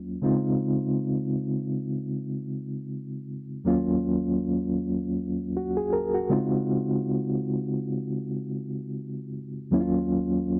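A reed electric piano plays alone, up front, its reedy, clean tone pulsing with a fast tremolo through its built-in speakers. This short soul passage in free time, cut from a longer piece, drifts between Dbmaj9 and Ebm7 with a silky, bittersweet mood. The sound is dry and close, like a 1970s studio recording, with light reverb and tuning set to A4 = 441 Hz.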